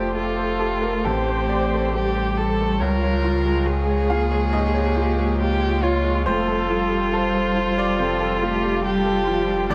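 A muted violin carries the melody up front, its veiled con sordino tone touched with light vibrato, portamento and a tape echo, while a bright, woody upright piano with long sustain plays accompaniment in this hopeful, tender neoclassical piece cut from a longer work. A dark muted cello shapes a smooth second line, a distant muted viola adds soft-edged accompaniment and a close chamber string section holds soft sustained chords in the background, and a thick, saturated sub bass with a fast attack sits up front underneath. The rubato feel drifts through Fadd9, Am7 and Db before returning to Fadd9 at 6.3 seconds, all set in a moderate recital hall reverb.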